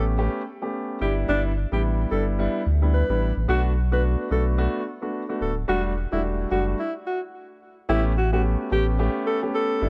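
An alto saxophone with vibrato sings a pop-style solo melody through delay over up-front grand piano chords and a deep, round sine sub bass in this mellow, hypnotic afrobeats cut at 109 BPM with a swung sixteenth feel, moving through A9, G6, Bm7 and Em11 before a stop from 6.8 to 7.9 seconds opens onto a new section on A9, the mix bathed in light studio reverb and the warbly pitch drift of worn cassette tape.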